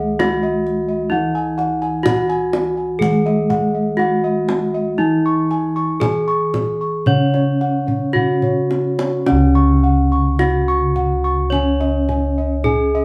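Javanese gamelan in a ceremonial mood, cut from a longer piece and played live in one room with moderate studio reverb. A bright, close-miked bronze metallophone carries the melody up front, while a second metallophone struck with padded mallets adds soft, mellow accompaniment with shimmering beats from its paired tuning; bossed gongs played with padded beaters ring out round, airy arpeggios, and a second, brighter set of bossed gongs holds down the bass. The tight, band-limited kendang plays a drum fill from 7.9 to 9.3 seconds that leads into a new section.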